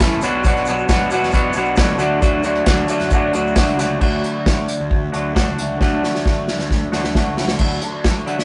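Indie rock with a wistful yet upbeat mood, this short cut from a longer piece moves in a straight four-four over a Bmadd9 that gives way to D. Up front, a twangy, scooped electric guitar plays a clean, fingered riff, while a raw garage guitar picks its own overdriven riff further back, colored by phaser. An acoustic drum kit played with bundle sticks sits forward in the mix, pairing a punchy kick and medium-tuned snare with dark cymbals, hi-hat and crash, and it plays a fill from 5.8 to 7.6 seconds. Underneath, a fingered electric bass with round, fuzzy overdrive holds the low end until 7.8 seconds. A grainy, vintage tube shaker adds faint texture only until 3.9 seconds. The whole has the rough, light-reverb sound of a rehearsal room, with a dulled top end.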